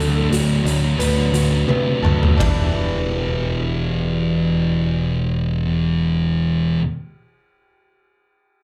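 A thick, up-front fuzz guitar riff, a growling, overdriven electric bass, a boxy fingerpicked swing-style acoustic guitar playing arpeggios with slapback echo, and a huge arena drum kit with bright cymbals and a boomy kick all sound together from the start of this dark, brooding fragment of quiet-loud alternative rock in E minor. The tempo, between 83 and 91 BPM in 4/4, slows over the opening, and a drum fill from 1.7 to 2.4 seconds carries the harmony from D6 to Em7. The drums stop at 2.6 seconds while the guitars and bass continue, all captured as a live gig through the venue's PA with club reverb.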